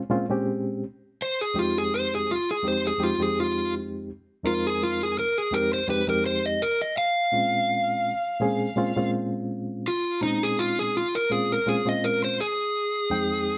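Soulful, brooding blues excerpt in F minor at 83 BPM with a light swing, where a bright, reedy electric piano with fast tremolo sets the accompaniment from 0.1 seconds and a dark, overdriven electric slide guitar takes the melody from 1.2 seconds, both up front in a moderate studio reverb that feels like a band playing live in one room over chords moving between Bbm7 and Fm7.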